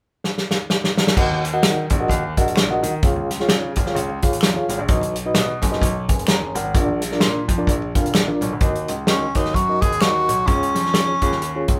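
Driving and urgent, this uptempo 1960s-style soul excerpt in Eb minor at 129 BPM with a swung 4/4 feel opens on a drum fill from the punchy, up-front kit before a reedy, worn electric piano with fast tremolo and a clear grand piano carrying the bass line join at about 1.2 seconds, followed moments later by very quiet damped congas and close finger snaps, all over a lightly reverberant live-room sound, with a breathy, subtone tenor saxophone taking the melody from 9.1 seconds.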